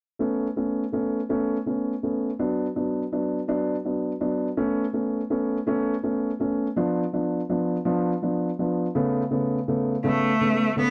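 A dry, close 1970s-style studio sound frames this tender, heartfelt pop fragment in A major, moving slowly in 6/8 at 55 BPM (dotted quarters) and cut from a longer piece. From 0.2 seconds a dark, mellow concert grand piano sits up front with deep bass, accompanying through chords of Aadd9, D6 and a poignant Dm6. At 10.1 seconds a single bowed cello enters with a bright, focused melody sung with vibrato.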